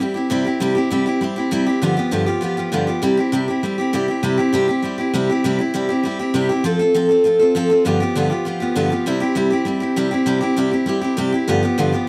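A straight 4/4 pulse at 199 BPM drives this upbeat, retro rock fragment, cut from a longer piece, where a solo picked steel-string dreadnought acoustic guitar, bright, full-bodied and up front, moves through C, G7 and F in C major, from G2 to A4, within a moderate studio ambience across roughly 12.1 seconds.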